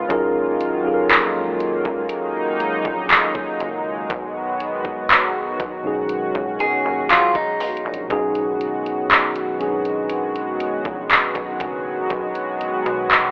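A dry, gritty recording with a telephone-like, transformer-saturated sound frames this slow contemporary R&B excerpt at 60 BPM in 4/4, longing and sensual in mood as it moves from F#maj13 to B6. A mellow tine electric piano and a shimmering, retro pulse-width pad with sidechain pumping carry the harmony over a rubbery, hollow square bass and an up-front electronic drum kit with a knocking kick, warm hi-hat and handclaps. A clean, picked electric guitar adds brief arpeggios through tape echo between 6.6 and 8.1 seconds.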